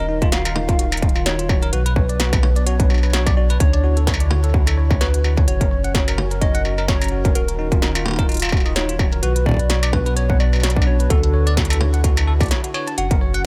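A dry IDM excerpt at 128 BPM with a light 16th-note swing, wistful yet playful, cycling through Ebmadd9, Cbmadd9, Dmaj7 and Gb chords. A round, gentle FM synth lead carries the melody through chorus, cassette-tape colour and delay, over a hollow, flute-like pad with 12-bit sampler grit, a bell-like tine electric piano playing arpeggios through tape echo, and a deep sine sub bass. A distorted electronic kick and an industrial kit of clanging snare, smooth hi-hats and struck metal drive the groove until a brief break at 12.5 seconds.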